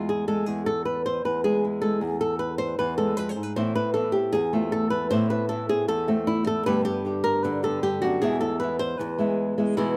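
A fingerpicked flamenco guitar sits up front and carries the melody from the first moment, its acoustic tone marked by audible finger squeak and a short slapback echo. The music is intense, dramatic flamenco at 155 BPM in a straight 4/4, cut from a longer piece. At 3.6 seconds a second fingerpicked flamenco guitar enters beneath it with stabs, sounding woody with old strings, sitting lower in the mix and carrying its own slapback echo. The harmony moves from E to Amadd9, then to G, and back to E. Recorded outdoors with little reverb, the guitars come across dry.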